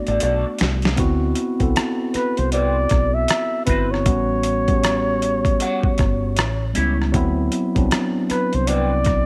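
A swung 78 BPM boom bap groove in 4/4, opening with a drum fill at 0.2 seconds on a gritty, overdriven, pitched-down sampler-style kit with a thumpy kick, sets up this soulful, introspective neo-soul R&B fragment, where a round, deep dub fingered bass and a mellow tine electric piano carry the chords from Bm7 through D13 and A13, a dark, slightly broken-up electric guitar through a small old amp adds a wah-tinged second line, and a breathy, whispered flugelhorn with vibrato and slapback echo sings an intimate, jazz-style melody up front, all in a light digital ambience.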